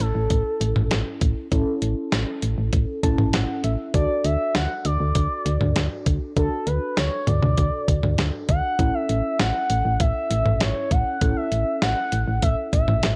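An expressive portamento lead with a warbling, wave-folded vintage tone and chorus carries the melody up front in this bright, upbeat synth-pop excerpt, over a punchy, round FM bass and a clean 12-bit drum machine with a thumpy kick. A mellow FM electric piano, soft and full-bodied with chorus and phaser, accompanies throughout and adds a fill from 2.7 to 3.9 seconds as the harmony moves from A to D and back to A. Light digital reverb surrounds a dry, gritty hardware sound with a cassette-tape character.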